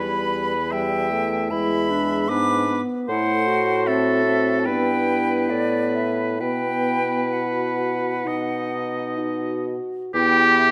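A slow, rubato pulse in 4/4 moves between 63 and 78 BPM, setting a melancholic, yearning mood for this classical romantic movement for wind quintet in E minor, cut from a longer piece. The bright concert flute carries the melody from D5 to D6, its pure, tongued tone lifted in the highs and shaded with expressive vibrato, while the clear oboe sings a second line up front with its own classical vibrato. Beneath them, the clarinet adds a warm accompaniment set in the background, and the French horn contributes a mellow, soft-attacked layer that sounds distant and roomy with light vibrato. The bassoon anchors the bass from E2 to B2, smooth on top and placed up front. The harmony passes from Em through E7 and Am to Em/G, leans on a Bsus4 at 6.4 seconds that resolves to B, and returns to Em at 10.1 seconds, all within a moderate stone room reverb that lends the ensemble a resonant, spacious air.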